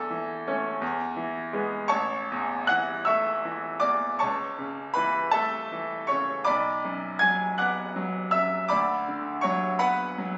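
A bright grand piano sits up front as the sole voice in this dreamy, tender romantic nocturne, unfolding in 12/8 with free rubato and reaching from deep bass to high treble. Its open, short-sustained tone rings into a moderate recital-hall reverb, though the phone capture in the room trims the top end. After a brief opening, a new passage begins at 1.9 seconds and moves through shifting harmonies before this fragment of a longer piece breaks off at 10.4 seconds.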